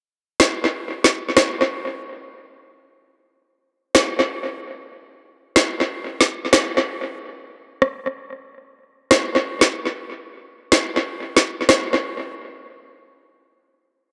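Sultry and hypnotic, this dancehall fragment, cut from a longer piece, moves at 93 BPM in 4/4 with a light swing on the sixteenths. Electronic snare drum, finger snaps and rim click carry the drum part from 0.4 to 11.9 seconds, sitting up front with a woody, produced snare sound fed through analog delay. A wet spring reverb wraps the echo-heavy mix.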